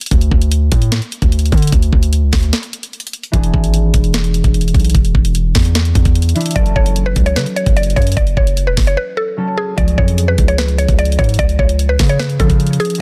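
This dark, hard-hitting trap excerpt opens with an electronic drum kit and a heavy 808-style bass arriving together, the knocking kick, sharp snare and bright hi-hats sitting up front with a tape-warm edge in a half-time feel. The bass is punchy and sine-based with a noise layer, its fast attack decaying up front alongside the kit and reaching down to E1. At 3.3 seconds a mellow concert harp enters as accompaniment, its thumb-plucked acoustic notes ringing quietly behind the beat. A woody, round FM synth pluck joins at 6.6 seconds to carry the melody, percussive and short in decay, with a touch of chorus and a noise layer in its tone. The mix is dry and dense, heavily limited in a modern style, and the chords move from D5 through E7 and F#m to C#.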